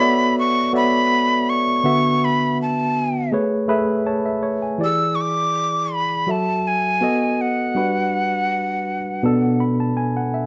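Over a gently swung sixteenth-note 4/4 groove, this smooth, warm soul fragment pairs an up-front, breathy metal jazz flute melody, crisp and chiffy with vibrato, against a worn, slightly out-of-tune tine electric piano heard as if through built-in speakers, which accompanies through jazzy extended chords like Bm11, Amaj9 and Gmaj7 and slips in fills at 3.3 and 9.2 seconds, both parts glossed with plate reverb in a moderate studio room, with the flute bowing out at 9.6 seconds.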